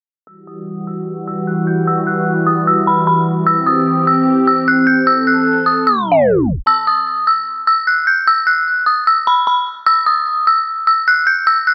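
This melancholic, dark hip hop fragment, cut from a longer piece, moves in a half-time feel. An eerie, detuned FM synth bell carries the melody high in its range, its inharmonic, fast-struck tones decaying into a mellow haze of chorus, low-pass filtering and digital delay. Beneath it, a warbling vintage analog pad of detuned sawtooth and triangle waves holds slow-blooming chords through Emadd9, C and Am, softened by lush chorus and a low-pass filter. A filter sweep runs through the opening passage until a tape stop from 5.9 s drags the sound down, and the pad falls away at 6.7 s. The bell then carries on alone over unaccompanied space until 11.7 s, both parts sitting up front in a concert hall reverb with a digital ambience.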